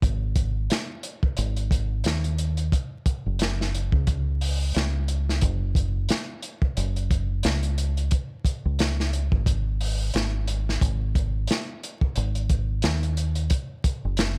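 A deep, round, punchy fingered electric bass sits up front beside a gritty, saturated breakbeat kit of tight kick, medium-tuned snare and hi-hat with a rolled-off top, driving this hypnotic, cinematic trip hop excerpt at 89 BPM with a swung 16th-note feel, dry and dusted with vinyl crackle.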